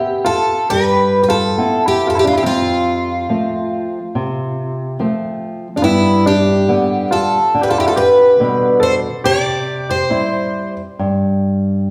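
A fado-style ballad in C major, this tender, nostalgic excerpt drifts at a rubato 70 BPM in 4/4, cut from a longer piece. A picked twelve-string acoustic guitar carries the melody up front, its fresh strings bright and shimmering with octave doubling. Beneath it, a felt-muted upright piano adds a soft, mellow second line, intimate enough that its action noise is audible. A dark, thumb-plucked flamenco guitar, also up front, supplies the accompaniment across a broad range, with finger squeak on the strings, and it sounds on alone after the other two parts stop at 10.7 seconds, until 11.9 seconds. The harmony moves from Cmaj7 through F and G before settling on C, all within a recital hall whose reverb lingers for 1.4 seconds.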